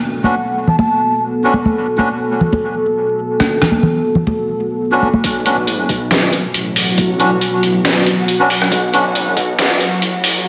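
A muffled, pitched-down trip hop sampler-style drum kit with overdriven snare, rim click and hi-hat sits up front from 3.4 s in this brooding, cavernous deep dubstep excerpt at 138 BPM in half-time, over a moody detuned ambient pad moving from B5 to Bsus2, with a hollow, breathy ney phrase and damped, high-tuned congas at the opening, reedy melodica stabs soaked in dub echo, and from 5.2 s a knocking, layered electronic kick and a deep rumbling saw bass joining a build-up, followed at 5.6 s by a reversed, dreamy granular texture, the mix carrying echo chamber reverb and vinyl crackle.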